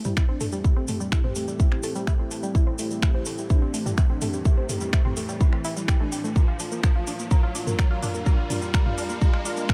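A punchy, tape-warm electronic kick sits up front in this hypnotic, driving melodic techno excerpt at 126 BPM in A phrygian, joined by a house kit of finger snaps, metallic hats and toms pumping against it, a grainy cabasa and a barely audible sequencer bass. A tight, wave-folded sequenced synth spins arpeggios through chorus, phaser and dub echo, while a smooth portamento lead with vibrato and an airy, detuned resonant pad both move through filter sweeps in the background, and a tense, string-like drone enters at 0.6 seconds. A riser from 1.6 seconds drives the build-up as the harmony moves from Am7 to Bb at 6.4 seconds, all set in digital ambience.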